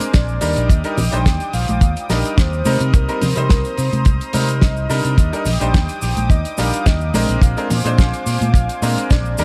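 Nu-disco in Eb major at 107 BPM, this sunny, feel-good clip moves in a straight 4/4 and is tuned slightly sharp to A4 = 444 Hz. A tight, dry kick drum sits up front as the loudest element, alongside a damped 70s drum kit with a fat snare and hi-hat, while cabasa, bongos and congas add soft-handed, close percussion in the background. A dark, round fingered electric bass carries the low end, and a brilliant concert grand piano plays present accompaniment chords, pumping through sidechain compression. Above it, a lush, detuned sawtooth unison pad holds thick, warbling vintage chords with chorus, also pumping with sidechain. From 0.1 seconds a mellow, octave-layered synth lead with a sub octave, chorus, vibrato and tape echo carries the melody over a cycle of Ebmaj7, Cm7, Ebmaj7 and Bb9. The mix sits in a small room ambience with a faint mains hum, in a short cut taken from a longer piece.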